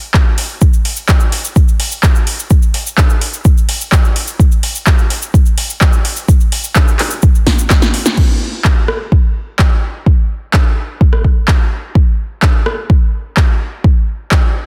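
Dreamy and bittersweet, this house excerpt at 127 BPM runs on a deep, up-front electronic kick and an overdriven, roomy deep house kit of punchy snare, metallic hi-hats, handclaps, rim clicks and crash cymbal, while a grainy, bright cabasa sits close and dry until 8.2 seconds, when a drum fill from 7.5 seconds and a band accent at 8.1 seconds lead into the second section, all in a dense, heavily limited modern mix with little reverb.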